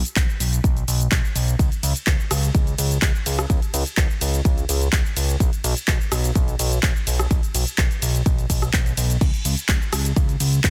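Progressive house with an expansive, bittersweet mood, moving in a straight 4/4 pulse in this short cut from a longer piece. A fat analog bass opens at 0.0 seconds, its thick sawtooth and square-wave tone shaped by a filter sweep and a moving notch, with a fast attack, sustained mellow notes and sidechain pumping. A deep house drum kit joins at 0.1 seconds with dark hats, handclaps, rim click, shaker, ride and crash cymbal, all given a touch of studio reverb. An electronic kick drum arrives at 0.2 seconds, a deep, layered kick sitting up front and carrying the most weight in the mix alongside the bass. The overall sound is close and dry, with little reverb on the whole, and it comes through a dense, heavily limited modern master.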